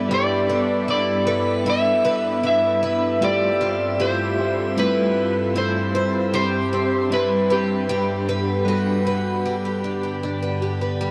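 A straight 4/4 pulse at 77 BPM carries this ethereal, floating dream pop excerpt in G major, its chords moving from G6 through Fmaj7/G and Cmaj7/G to Gmaj7 before settling on G at 9.5 seconds. Up front, an electric slide guitar played with fingerpicks sings the melody through tape echo, slightly broken-up and warm, while a picked twelve-string acoustic guitar rolls out octave-doubled arpeggios with a boxy archtop body, audible finger squeak and lush chorus. A warbling, lo-fi pad built from detuned square and triangle tones holds sustained chords across the whole passage, its slow attack and long release colored by chorus, phaser and its own reverb for a nostalgic haze. Further back, a dark, compressed electric guitar at the edge of break-up adds tremolo-pulsed accompaniment with analog chorus until 9.5 seconds. From 1.3 seconds a bright FM bell with a halo of ensemble chorus and tape echo sparkles quietly in the background, and the whole dark production sits in a drenched shimmer reverb with a six-second tail.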